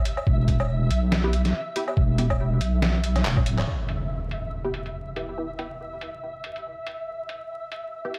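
A swung, half-time deep dubstep groove sets a dark, cavernous mood in this fragment of a longer piece. It opens on a flickering, grainy texture and a muffled, pitched-down trip hop kit of handclaps, hi-hat, snare and woodblock, joined at 0.3 seconds by a thumpy electronic kick and a heavy, saturated wobble bass up front. Quiet filtered dub chord stabs, muted yet bright with a short pluck, phaser and dub echo, carry on after a drum fill and band accent as the kick drops out, the bass stops at 3.7 seconds and an electronic impact hits, all under vinyl crackle and light reverb.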